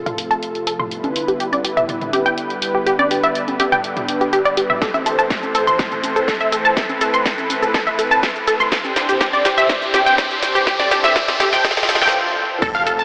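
Progressive house build-up, expansive and bittersweet, where a lush, detuned sawtooth unison pluck sits up front with cassette-tape grit, dub echo and sidechain pumping as a filter sweep moves across it, over a smooth, mellow, chorused pumping pad, a layered house kit with a cracking snare, high-passed hats, shaker and crash, and tape-warm electronic toms and congas in the background; a punchy electronic kick arrives at 4.8 s, a background riser and swell climb toward a brief break, and at 12.6 s an impact lands alongside a dark, vibrato-laden synth lead and a round, deep analog bass, the mix bathed in a huge ambient reverb with a thin AM-radio tone.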